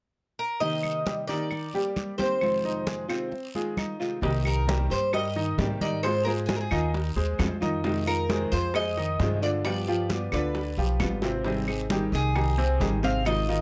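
Sultry, danceable Cuban son and guajira at 133 BPM in C minor, where a metallic, double-strung Cuban tres carries the melody up front over fingerpicked nylon-string guitar with old strings, clear but worn grand piano arpeggios, background congas and claves, and a raspy, close and dry guiro, before a dark, thumpy gut-string upright bass and tight, high-tuned bongos join at 4.2 s and a drum fill arrives at 11.2 s, all in close, detailed sound with light reverb.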